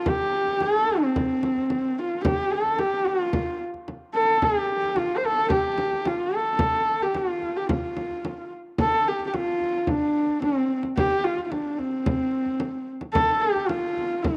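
A straight 4/4 pulse at 110 BPM drives this Mongolian folk piece, cut from a longer performance, with a galloping, vast mood. A single dark horsehead fiddle carries the melody in F gong mode, ranging from C4 to C5. Its husky, bowed horsehair tone has a soft attack, vibrato, portamento and an airy bow, heard close and intimate with a boxy, cassette-tape colour. A deep, large frame drum joins at 0.1 s, played with hard hands and heard close and dry. Both parts sit up front in a home cassette recording with a moderate spring reverb, and the music moves into a new section at 8.8 s before the cut at 14.4 s.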